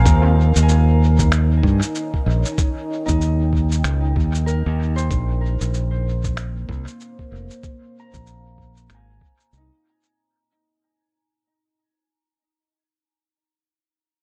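A muffled, thumpy electronic kick sets a relaxed 95 BPM pulse in 4/4 with a swung sixteenth feel, alongside pitched-down, sampler-style cabasa and finger snaps trailing dub echo, both parts carrying the boxy color of a small room. This short ambient dub fragment, cut from a longer piece, sits in Eb mixolydian and moves from Eb7 to Bbsus2 at 5.1 seconds, with a fade-out running across its length. Up front, a bright, direct fingered electric bass holds the low end and stops at 9.7 seconds. Above it, a deep, moody pad of detuned sawtooth and sine layers with a sub octave, wave-folding and ring modulation sustains dark chords through chorus and its own reverb until 10.2 seconds. A fingerpicked Celtic harp rings out arpeggios through a low-pass filter and tape echo, lasting longest to 12.3 seconds, and the echo-heavy, dry mix leaves a spacious, peaceful calm.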